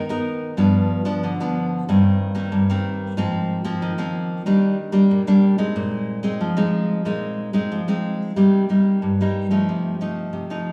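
A solo nylon-string guitar, full-bodied and up front, carries this bittersweet yet lively samba at 92 BPM, fingerpicked in a classical manner with finger squeak audible on the strings. Its harmony moves through rich chords such as Abmadd9, G7, Ab69 and Bb9sus4 before a new section begins at 8.4 seconds on Cm7 and F7/C. The playing sits in a resonant recital-hall reverb with small-room ambience, and the short passage, cut from a longer piece, ends at 10.7 seconds.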